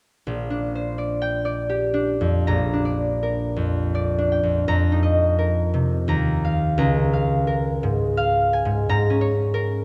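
A dark production places a single concert harp up front in a wet concert hall, its reverb carrying a long tail of about 1.9 seconds. This excerpt of a classical solo harp piece in Bb major feels serene and graceful, moving in 3/4 with a rubato pulse that ranges between 73 and 90 BPM. The fingerpicked harp rings warmly across a span from Bb1 to Bb5, playing from 0.3 to 9.8 seconds. A brief opening on Bb69 gives way at 2.5 seconds to a longer passage that drifts through Bb6, F9sus4, Ebadd9 and Db6. The harmony settles on Absus24 near the close, leaving the acoustic instrument's ringing tones to bloom in the hall.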